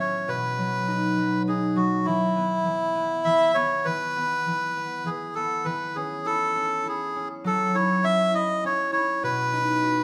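Set in a gentle 3/4 at 101 BPM with a straight feel, this children's lullaby in E major sways along with an innocent, sleepy mood, tuned slightly low to A4 = 438 Hz. A reedy, nasal melodica carries the tune between E4 and E5, its breathy, plastic-bodied tone sitting up front. Beneath it, a concert harp supplies fingerpicked accompaniment from A2 to F#4, its ringing acoustic strings also close and present. The harmony moves through B, E5, A/E, F#5 and back to B, and the opening phrase is stated and then repeated from 3.9 s. A moderate recital hall reverb with a 1.5 s decay gives the pair a soft sense of space in this short passage cut from a longer piece.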